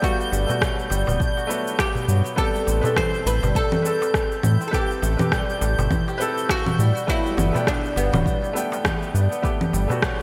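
Organic downtempo at 102 BPM in A dorian, hypnotic and meditative, with a 16th-note swing and chords moving from Gmaj7 to Am7 and back. A woody, plectrum-plucked fretless oud carries the melody over a soft, felt-muted upright piano with audible action noise and sidechain pumping, ringing fingerpicked kora arpeggios, and a twinkling granular texture, with digital delay and shimmer reverb on the oud, piano and kora and shimmer reverb on the texture. Beneath them a round, dark analog bass with ring modulation pumps up front from 0.3 seconds beside a deep, tape-warm electronic kick, while electronic shaker, rim click and congas with gated reverb and a crisp metal-shell darbuka in the background fill out the groove in a lush hall with a bright 1980s-style digital sheen.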